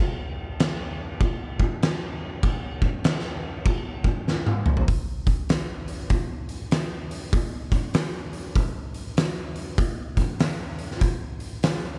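An oversized, low-tuned acoustic drum kit enters at 0.6 seconds, up front and gritty with saturation, its punchy kick, fat snare, toms, hi-hat, crash and dark cymbals ringing in a bright, pumping stone room with little reverb, setting an ominous, hypnotic metal groove at 98 BPM in 4/4 with a swung eighth-note feel, then a drum fill at 4.3 seconds carries it into a new section at 4.9 seconds in this excerpt from a longer piece.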